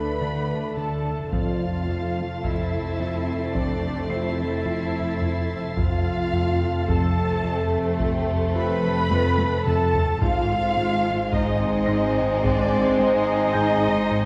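A slow, straight 4/4 pulse at 54 BPM underpins this tense, ominous suspense film-score excerpt, where veiled, con sordino violins carry the melody over a second violin line, violas, cellos and double basses, with very quiet mellow French horns and trombones holding sustained chords alongside a pulsing, tempo-synced gated texture and a faint grand piano high above. A fat, detuned analog bass riff with a saturated filter pluck enters at 0.2 seconds, heavy-stick taiko drums join at 1.3 seconds with a drum fill at 9.1 seconds, and a distant, muted violin texture plays in the background. The ensemble sits far back in a wet scoring-stage reverb, tinged with vinyl crackle, as the harmony shifts from D5 to F and then to G# at 10.2 seconds.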